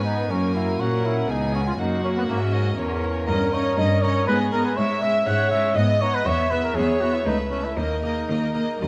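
A stormy, dramatic baroque-style concerto movement opens at once with its full ensemble: a mellow, distant trumpet sings the solo melody with light vibrato, joined higher by a clear, intense violin section. The movement is in 3/4 at 121 BPM with a straight feel, and the harmony moves from F# and C#7 through G#m and E toward a suspended D#sus4 close. A second violin section adds an expressive second line, its soft attack and portamento sitting further back. A rich, focused viola section fills the middle, while a smooth, even cello section carries the bass up front. A bright, delicate fingerpicked lute with doubled nylon strings adds very quiet accompaniment. A moderate concert-hall reverb and a dark, warm production frame this brief 8.9-second excerpt cut from a longer piece.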